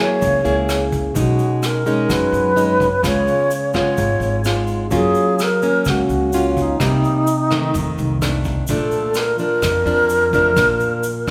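An airy, mellow alto flute with vibrato and a soft attack carries the melody in this sunny, relaxed bossa nova, over up-front fingerpicked nylon-string guitar with audible finger squeak, woody pizzicato upright bass on gut strings, a muffled lo-fi brush kit with a punchy kick and rim clicks, and a grainy egg shaker, all set in the moderate reverb of a recital hall.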